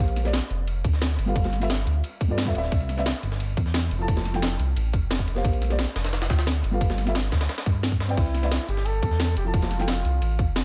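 A digital ambience wraps this short cut from a longer liquid drum and bass piece, giving it a warm, dreamy glow. A smooth, dark synth bass sits up front from the start, its sawtooth and square-wave tone edged with ring modulation and held in sustained notes under chords such as Bb69, G13, Cmaj9 and Fmaj7. Beside it, a felt-muted upright piano adds soft, intimate accompaniment with a short sustain and a touch of digital delay. The drums are layered: an overdriven electronic kick with a tight punch, a produced kit with a cracking snare and bright hats, and a gritty, pitched-up sampler-style breakbeat kit with a high-tuned snare and ride, re-recorded in a large room and thinned by high-pass filtering. Round, low-tuned bongos tap in the background in brief touches, and at 8.2 seconds a veiled, distant trumpet with a bucket mute enters as a classical-style solo melody, trailed by digital delay.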